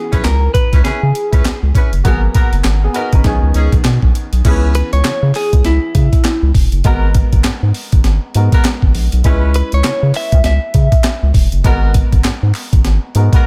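A clean, direct-recorded electric guitar carries the melody from the start, colored by phaser and tape echo, alongside a clear baby grand piano. At 0.1 seconds, a round, deep analog bass, gritty compressed breakbeat drums with a thumpy kick, and distant, roomy jazz-style horn stabs join in. This slick, confident new jack swing excerpt moves at 100 BPM in C# dorian with a swung 16th-note feel, cycling through C#m7, G#m9 and B69 as the bass and drums sit up front. A very quiet, crisp group handclap enters at 5.0 seconds, and the guitar stops at 11.3 seconds while the piano, horns and rhythm section carry on.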